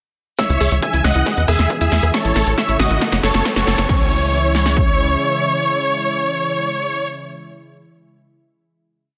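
A huge, detuned supersaw lead carries a repeating riff melody in thirds and sixths, pumping against the sidechain and trailed by delay, while a very quiet unison pluck doubles it an octave higher in this short, euphoric and emotional uplifting trance piece in C# minor at 137 BPM. Beneath it, a thick, warbling chorused pad sustains the C#m, E, A and F#m chords, a second quiet pluck runs a 16-step arpeggiated sequence, and a tight sequencer bass rolls in sixteenth notes. Overdriven techno drums with a heavy four-on-the-floor kick, punchy snare, programmed hats, rim and crash, plus a grainy hand-played egg shaker and a faint riser from 2.7 s, drive a build-up and drum fill that give way at 3.9 s to a final chord, all in moderate hall reverb and a dense, heavily limited modern master.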